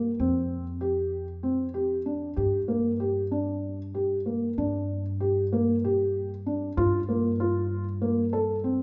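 A felt-muted upright piano sits up front with boxy, intimate arpeggios over Fsus2 and G minor chords, giving this pensive, hypnotic stretch of contemporary chamber music in G minor its dark, hushed character. A pizzicato upright bass with a woody, growly tone holds the low end beneath it, both parts playing throughout this cut from a longer piece in a straight 7/8 at 192 BPM counted in eighths, tuned to A4 = 439 Hz. A moderate scoring-stage reverb lends space, and a second section from 4.6 seconds shifts the harmony to G5 and Bb5/G.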